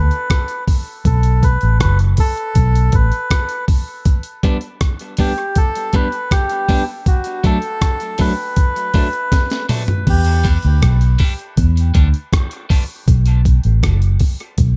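A round, foam-muted vintage electric bass sits up front in this hypnotic, meditative dub reggae excerpt at 80 BPM, dropping out at 3.1 seconds and returning at 10.1 beneath a gritty, compressed breakbeat sampler-style kit with a thumpy kick and high-tuned snare, while a reedy, breathy melodica carries the melody through dub echo and a slightly broken-up electric guitar, high-pass filtered and echoed, adds accompaniment from 4.4 seconds, all in a dark, dry production.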